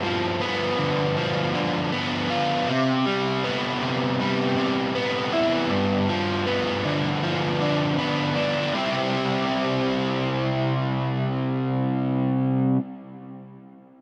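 In a straight 4/4 at 79 BPM, this hazy, dreamy rock excerpt in C major features a lone overdriven electric guitar, dark, picked and double-tracked, sitting up front with a subtle chorus and bathed in a huge ambient reverb with a 5.0-second decay, as it moves through G7, Cmaj7 and G7 before settling on C at 8.7 s.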